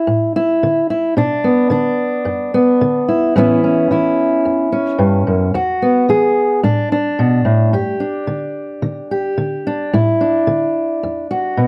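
A straight 4/4 pulse at 110 BPM carries this hopeful, uplifting folk excerpt, where a solo fingerpicked steel-string acoustic guitar, up front with a dark, woody tone from old strings, moves through suspended and added-ninth colors in chords like Dsus2, Bm, Aadd9 and Eadd9 before shifting to a new section at 7.7 seconds built on G5 and Asus4, all set in a moderate large-studio reverb.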